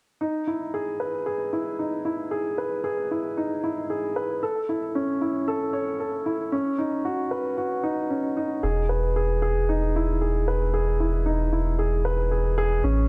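Electronica at 114 BPM in 4/4 with a straight feel, set in E major with tuning at A4 = 438 Hz, this short passage cut from a longer piece feels hopeful and tender. An upright piano carries the riff from 0.2 seconds to the end at 13.1 seconds, sitting between C#4 and C#5 with a warm, woody, up-front tone and a tape echo trailing its notes. At 8.6 seconds a warm sub bass enters, ranging from E1 to A1, its round sine tone deep and dark, with a fast attack and long sustain, sitting up front. The harmony moves from Emaj7 to A, then to Badd9, and returns to Emaj7 just as the bass arrives. Light reverb and a small room ambience give the whole an intimate setting.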